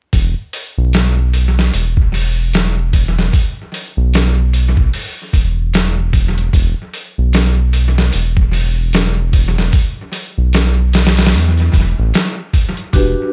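A round, deep analog bass anchors this brooding, dark trip hop excerpt in E minor at 75 BPM, its mellow, sustained tone sitting up front over an E5 chord with a swung 16th-note feel. The sampler-style drum kit sounds muffled, pitched down and compressed, with a thumpy kick, a medium-tuned snare and hi-hat, all treated with analog delay. At 12.9 s a dark, metallic vibraphone with tremolo rings in briefly, in a dry, echo-heavy mix laced with vinyl crackle.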